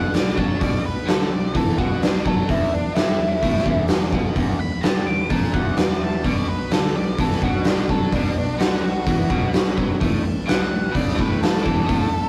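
An oversized, low-tuned drum kit sits up front in this gritty, raunchy blues rock power trio cut with a southern rock lean, its fat snare and punchy kick saturated and dark in a bright stone room. Over a straight 4/4 at 128 BPM, an octave-fuzz lead guitar solos from the first second, its dark, distorted, picked tone carrying a slapback echo. Beneath it, a double-tracked overdriven electric guitar picks a bright low riff while a very quiet fuzz bass, fingered and punchy, adds its warm, overdriven growl. At 5.9 seconds an overdriven tonewheel organ joins with thick, sustained chords, very quiet and turning through a slow rotary speaker. The harmony moves from B5 to E5, B and A5, and the whole fragment, cut from a longer piece, carries a rough rehearsal-room feel with light reverb and warm saturation.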